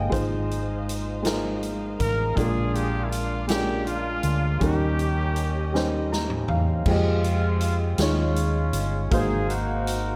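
A raspy, growling trumpet with slapback echo carries the melody from 2.0 seconds alongside a mellow horn section in this jubilant, hopeful slow gospel fragment at 53 BPM in 6/8, over a woody, slightly detuned upright piano, a dark, round hollow-body electric bass, a big-band drum kit with a punchy kick that plays a fill at 5.7 seconds while the piano plays its own, and lush bowed strings in the background until 6.8 seconds.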